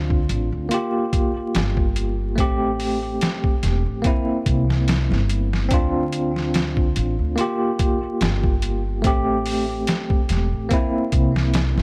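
A lightly swung 72 BPM groove in 4/4 from a gritty, pitched-down sampler-style drum kit, overdriven and up front with a thumpy kick and medium-tuned snare, drives this melancholic, brooding trip hop fragment in D minor, where a woody pizzicato upright bass sits low beneath a bell-like, bright tine electric piano treated with tremolo and tape echo as it cycles through Dm7, Gm7, Am7 and C7, the dry mix dusted with vinyl crackle.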